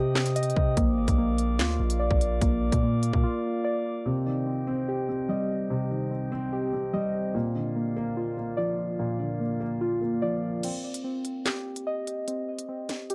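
Drill-style hip hop in C minor at 146 BPM with a half-time feel, this dark, cold excerpt opens with a glassy, ethereal glass harmonica holding slow-blooming chords over muted, felt-like synth keys that play intimate arpeggios through chorus and tape echo. A deep, sine-toned 808-style bass and an up-front electronic drill kit, with a hard-clipped kick, sharp snare, crisp hats, handclaps, rim clicks and crash, carry the opening until the low end and drums drop out at 3.2 seconds for a break. At 4.1 seconds a dark, boxy concert grand piano enters with mellow, short-sustained accompaniment under the harmonica and synth keys as the harmony moves between C minor and B-flat. The drums return at 10.6 seconds beside the synth arpeggios, the harmonica and piano falling away. Light reverb gives the mix a modest sense of space.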